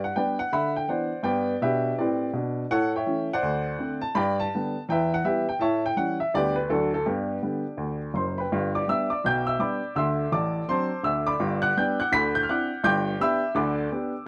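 A brisk swing at 166 BPM in 4/4 drives this exuberant stride piano piece in G major, cut from a longer work and tuned slightly sharp of concert pitch. A solo upright piano, clear, woody and up front, plays from 0.0 to 14.1 seconds across a range from F#1 to B6, moving through two statements of the same section with dominant colours like D13, A7 and D9 resolving home to G. The production is dark and warm, with a moderate studio reverb giving the instrument a snug room around it.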